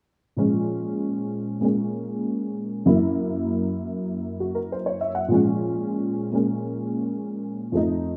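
A moderate, large studio reverb wraps this short excerpt cut from a longer piece, with a honky-tonk upright piano sitting up front, its detuned, jangly, woody tone giving a vintage character. It's cool, smoky solo jazz in Bb minor at 98 BPM in 4/4, played with a swung, rubato feel from 0.4 to 8.2 seconds, ranging from F2 to Gb5. The harmony moves from Bbm7 to Gb7 at 2.9 seconds and back to Bbm7 at 5.3 seconds.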